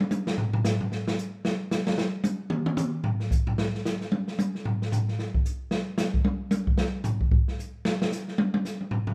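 Hypnotic and cool, this brief jazz excerpt is a drum solo at a brisk 225 BPM in 4/4, swung lightly on the eighth notes. An open acoustic jazz kit carries the whole 9.1 seconds alone, moving across hi-hat, kick drum, snare drum and toms. The kit sounds dark and smooth, with a medium-tuned snare, a boomy kick and a rolled-off top, and it sits up front in the mix. Moderate large-studio reverb gives the playing a sense of a band performing live in one room. The solo runs as two passes of the same section, the second beginning at 3.6 seconds.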